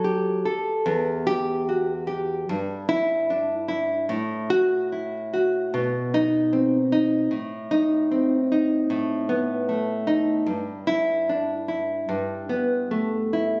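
A fingerpicked nylon-string guitar sits up front in this intimate, passionate romantic piece for solo classical guitar, its acoustic tone dark and close, with audible finger squeak as the hands shift. The playing is rubato around 74 BPM in 4/4, in E minor, and the guitar spans E2 to A4. The harmony starts on F#m and settles into Em, passes through Em/G and F#m7/A, then leans on B and B7/A before returning to Em/G at 10.5 seconds. Captured on a phone in the room with a light reverb, the sound feels personal. The recording runs 13.6 seconds and is cut from a longer piece.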